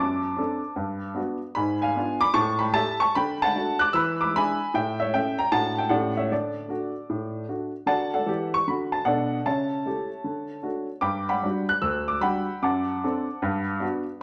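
A brisk, swinging 4/4 pulse at 152 BPM drives this playful stride-piano passage in D major, cut from a longer piece. A woody, up-front upright piano plays alone from 0.0 to 14.1 s, ranging from D2 to F#6 and moving through chords such as Gmaj7, G#dim7, E7 and A7 across two matching phrases that turn at 7.9 s. Recorded live in one room, the piano sits in a moderate large-studio reverb that keeps its present tone clear while adding a sense of room.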